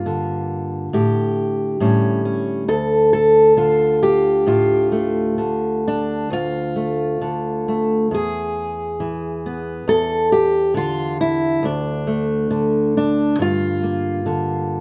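Folk fingerstyle in D minor at 68 BPM with a rubato feel: a lone fingerpicked steel-string acoustic guitar sits up front in light reverb, its intimate, melancholic phrasing spanning D2 to A4 with audible finger squeak as it moves from Gm through A7sus4 and A7 to Dm, then later through E, Em7 and D5 before returning to Gm at 13.4 seconds in this short cut from a longer piece.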